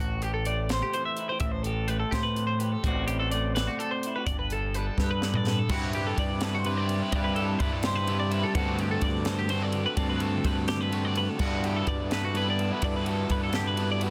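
A lilting 6/8 pulse at 84 beats per minute in dotted quarters, played straight, drives this bright, playful slice of math rock and midwest emo, cut from a longer piece. A lo-fi, slightly broken-up electric guitar through a small old amp carries the accompaniment while a twangy twelve-string electric spins compressed arpeggios wrapped in lush chorus, both sounding from the first moment. A growling picked bass with overdrive sits up front underneath, and a crisp fusion kit with a high-tuned snare, punchy kick, crash, ride, hi-hat and toms joins at 0.2 seconds in an airy, polished studio room. After a drum fill closes the opening stretch over Am7 and Gadd9, a double-tracked, overdriven semi-hollow guitar enters at 5.7 seconds with a riff pulsing through harmonic tremolo. From there the harmony moves through Cmaj9/G, D7sus4/G and Em11/G, each chord resting on G, all set in a dry, dense, heavily limited modern mix.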